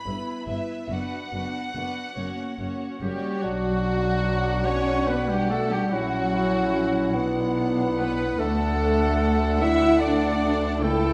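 Heard through the wet reverb of a scoring stage, this slow romantic orchestral movement in 6/8 unfolds with flexible rubato and a solemn, elegiac mood. A lush, focused violin section sings the melody above a smooth second violin line, while violas sit close in the background and a dark, woody cello section and a rich double bass section anchor the bass. At 3.0 seconds a clear oboe joins on a second line, and a very quiet French horn section adds sustained chords with a warm glow. From 3.4 seconds a distant, pure silver flute and a mellow clarinet weave further lines in the background, and a soft-attack bassoon fills out the accompaniment. The harmony moves through Bm and F# before arriving on D as the passage breaks off.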